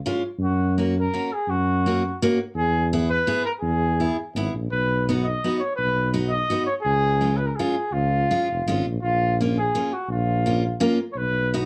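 Alpine folk in the manner of an alpine dance band, this bouncy, festive excerpt moves in 3/4 at 167 BPM with a loose, rubato feel in F# major. A picked steel-string acoustic guitar opens at 0.1 seconds, its bright, full-bodied dreadnought tone carrying audible finger squeak as it supplies the accompaniment. From 0.4 seconds a mellow trumpet takes the melody with light vibrato in a classical style, sounding distant and roomy, while a close-miked tuba anchors the bass with its own gentle vibrato. The harmony travels from F# through E, B and C# before settling on A#m near the end. A small room gives moderate reverb, and the whole excerpt is coloured by worn cassette tape with a warbly pitch drift that lends it an aged character.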